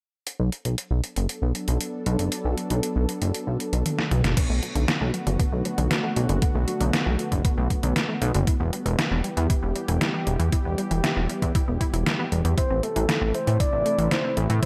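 Set in light reverb, this driving, cinematic synthwave excerpt opens with an overdriven, detuned 8-bit drum machine with a fat snare and gated reverb and a glossy chorused synth bass, soon joined by a thick, slow-attack unison pad, the bass and pad both pumping to the sidechain as filter sweeps run through them ahead of a drum fill. At 4.4 seconds a thumpy, overdriven electronic kick arrives up front, alongside a punchy, warbling unison pluck that plays arpeggios through digital delay in the background. From 12.6 seconds a round, dark octave-layered synth lead carries the melody with chorus and vibrato.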